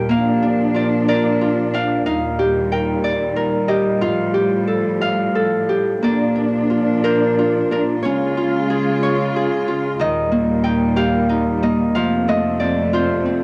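A rubato 6/8 lilt carries this innocent, sleepy children's piece, cut from a longer work, in which a ringing, fingerpicked Celtic harp sings the melody up front over smooth, bowed sustained chords from a rich symphonic string section with light vibrato, all softened by light reverb and the homely grain of a cassette recording.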